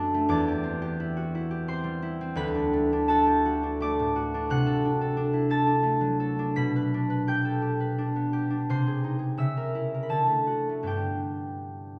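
Classical solo harp piece in G major and 3/4, with a peaceful, dreamy mood and a flexible rubato pulse drifting between 76 and 89 BPM. The concert harp is fingerpicked and ringing, spanning D2 to B6 and sitting up front in a warm acoustic tone, while the wet recital hall reverb places the listener further back in the room. The harmony moves from C/E through D and D7/C to G/B, then takes a colorful turn through Ab/C and C#m6 before settling on D and then G at 10.9 seconds.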